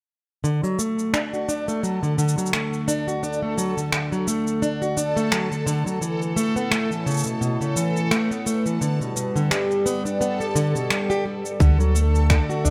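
Hopeful and playful, this folktronica cut from a longer piece moves at 86 BPM in 4/4 with a light 16th-note swing, settled in D major. A picked, plugged-in steel-string acoustic guitar sits up front with parlour-sized arpeggios, softened by a low-pass filter and trailed by delay, while electronic cabasa and finger snaps with a tape-warm, small-room character keep time from 0.4 seconds. Behind them a smooth sawtooth-and-triangle analog pad holds mellow sustained chords through chorus, its filter sweeping across the opening section as the harmony moves from D to Aadd9 and G. From 1.4 seconds a reversed, detuned, granular texture adds a dreamy, bright shimmer high above, carrying its own built-in reverb. At 11.6 seconds the chords return to D and a round, deep analog bass enters with a tight, up-front electronic kick drum, all set in a moderate echo chamber reverb.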